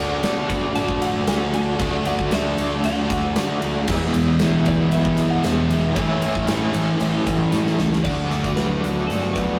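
Blissful, dreamy shoegaze and dream pop rock in D lydian at 115 BPM, cut from a longer piece, where a biting, double-tracked overdriven guitar with tremolo drives its riff up front over a crunchy overdriven guitar and a dark, thick fuzz guitar in the background, a punchy, amped fingered electric bass, and a huge arena drum kit with bright cymbals, a punchy kick and a pumping room sound that fires off a fill at 7.5 seconds; a jingly tambourine sits very quiet, and a clean, twangy, compressed twelve-string electric guitar melody floats behind from 0.5 seconds, all moving through D, E and A before landing on D6, in a rough rehearsal-room recording with tube saturation and wet stone room reverb.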